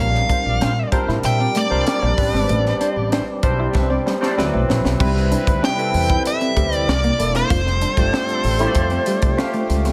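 A light reverb and small-room ambience give this polished 1980s jazz-funk pop excerpt an upbeat, glossy sheen at 96 BPM in C major, with an overdriven, nasal lead guitar through a parked wah carrying the melody up front over barky tine electric piano, a clean fingered semi-hollow guitar riff in the background, and a woody, growly pizzicato upright bass. A crisp fusion kit with bright cymbals, a high-tuned snare and a tight kick drives the groove and plays a fill from 3.7 to 5.0 seconds, while a punchy horn section with light vibrato adds a second line behind. At 5.0 seconds a very quiet, swirling phased string machine enters with sustained chords as the harmony moves from Bb69 through Am11 and D13 to Cmaj7, C13 and F69.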